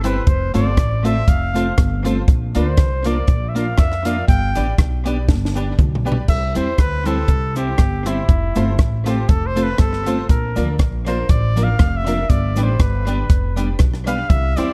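A trumpet with light vibrato and analog delay solos over this bouncy, cheerful ska excerpt at 120 BPM in C major, backed by a dry, up-front cocktail drum kit with a punchy kick, high-tuned snare and a fill from 5.3 to 6.3 seconds, a woody, thumpy pizzicato upright bass, clean picked electric guitar with spring reverb, jangly detuned honky-tonk piano stabs and a very quiet, grainy cabasa, set in a dark, warm small-room production.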